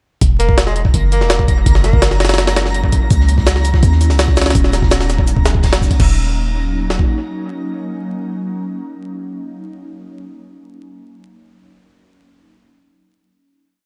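A vinyl-crackled, echo-heavy mix in a small room opens this dark, atmospheric drum and bass piece in jungle style, where a gritty, pitched-up sampler drum kit with a thumpy kick and heavily chopped breakbeat sits up front with dub echo beside a deep, boomy 808-style bass of long gliding notes. A breathy tenor saxophone plays short jazz phrases with vibrato and scooped notes until 2.1 seconds, while an ethereal pad with chorus, phaser and 12-bit grit holds sustained chords over a twinkling granular high note far in the background. From 3.1 seconds a very quiet, saturated looped breakbeat with a rolled-off top joins. After the drums and bass stop, the pad rings on alone through a final chord until 9.7 seconds.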